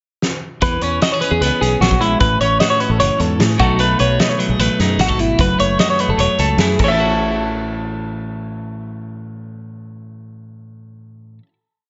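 A straight 4/4 pulse opens with a drum fill from 0.2 s, and the loose acoustic kit, with its punchy kick, fat snare and dark cymbals in a pumping room, breaks up the groove until it stops at 6.9 s. This short, intricate and bright math rock and midwest emo piece sets a compressed, up-front twelve-string electric guitar ostinato, bathed in spring reverb, against a clean electric guitar's bright fingerstyle rolling arpeggios and a foam-muted fingered bass riff that is syncopated and direct, moving through E6, A6, B7 and F#m7. The guitars and bass then ring out on a final A6 hit from 7.0 s in a small, moderately reverberant room.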